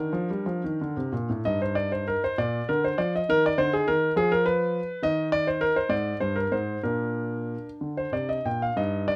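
Flowing and serene, this short passage from a longer baroque-style suite movement for solo grand piano moves in 6/8 at roughly 59-70 beats per minute, counted in dotted quarters, with a freely breathing rubato. The piano is tuned to A4 = 444 Hz and spans G2 to G5. Its tone is clear, intimate and natural, with long sustain, and it sits up front, close enough that the action noise of the instrument is audible. Light reverb gives the sound a gentle sense of space. The harmony moves from Bb through Eb/G and Cm9, briefly sets chords aside at 4.1 seconds, then gathers on a rich Bb13 at 5.9 seconds before settling back onto Bb at 6.9 seconds.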